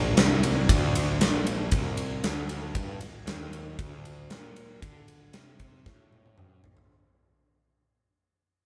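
Recorded as a band playing live in one room, this short cut from a longer piece carries a light reverb and a top end that stops at 10.8 kHz, giving it a smoky, gritty air. It sits between blues rock power trio and southern rock, moving at a straight 116 BPM in 4/4, with a fade-out running across its whole length. A picked electric bass, overdriven into a growly fuzz and sitting up front, opens the track and spans a range from Bb1 to D3 before dropping out at 6.7 seconds. A huge arena drum kit joins at 0.2 seconds, also up front, with a punchy kick, a medium-tuned snare, toms and a ride among bright cymbals, all heard in a hall-like acoustic space. The drums close the passage with a fill starting at 5.9 seconds.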